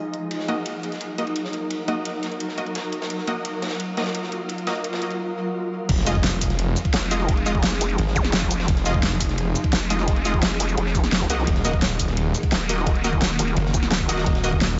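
Dark technical drum and bass at 172 BPM in F phrygian, futuristic and tense, where a swarming, ring-modulated drone with lush chorus and sidechain pumping holds sustained chords under bold, punchy orchestra-hit-like stabs with delay, an overdriven dubstep kit with a huge snare sits up front over a gritty, saturated breakbeat kit in the background, and at 5.9 seconds the drop lands with a very quiet impact and zap, a knocking overdriven kick and a snarling distorted saw bass, joined at 6.9 seconds by a nasal vowel-sweep wobble bass, all within a dreamy mix soaked in cathedral reverb.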